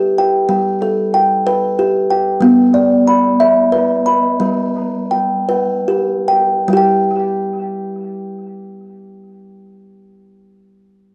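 Dreamy and calm, this meditative world-music fragment in 6/8 centres on a single up-front kalimba, thumb-plucked with a woody, hollow-box ring, playing arpeggios over G and G6 harmony as the tempo slows between 2.4 and 6.7 seconds before the chords fall away at 6.7 seconds and the kalimba stops at 9.9 seconds, its tone coloured by cassette tape and analog delay inside a wet studio reverb on a homemade cassette recording.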